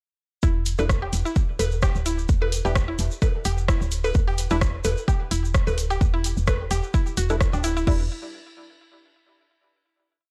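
Hypnotic and clinical, this short minimal techno piece runs at 129 BPM in E minor with a light sixteenth-note swing. A punchy, tape-warm four-on-the-floor kick sits up front with a soft, dark, woody FM bass in a dotted rhythm, while a bright, mallet-like synth pluck with chorus and tape echo cycles a 7-step loop that drifts against the bar. Around them come sparse, muted dub chord stabs moved in parallel, programmed house hats, rim clicks and crash, overdriven cowbell and woodblock blips in cross rhythm, and a grainy hand-played tube shaker, all in a dry, gritty cassette sound before the groove gives way to a final chord at 7.9 seconds.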